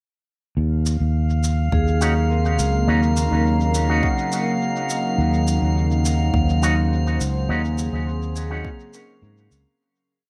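Meditative and deep, this ambient dub piece moves at 104 BPM in Eb dorian, with a bright, growly fingered electric bass up front carrying a dub-style line from 0.6 seconds over an Ebm7 groove. A soft, tape-warm electronic kick and a muffled, pitched-down shaker with a sparse echoing beat sit under airy, ringing vibraphone loops drifting against each other, dark, clean envelope-filtered guitar stabs, and a glassy high note of drifting overtones. From 2.6 seconds a warbling, lo-fi pad with chorus and built-in reverb adds slowly shifting chords before the whole piece fades out from 6.7 seconds.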